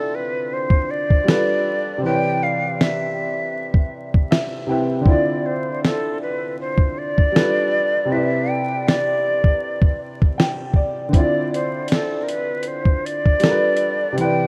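A breathy, close-miked jazz flute carries the melody with vibrato and a tongued, unsteady chiff, softened by a low-pass filter alongside a woody, slightly detuned upright piano that accompanies and adds fills at 3.9 and 10.0 seconds. This hazy, nostalgic lo-fi hip hop excerpt in D dorian moves at 79 BPM with a light swing, cycling through Dm7, G7 and Cmaj7, while a gritty, compressed sampler-style drum kit with a thumpy kick and fat snare enters up front at 0.7 seconds. Moderate plate reverb and vinyl crackle color the rough home-demo mix.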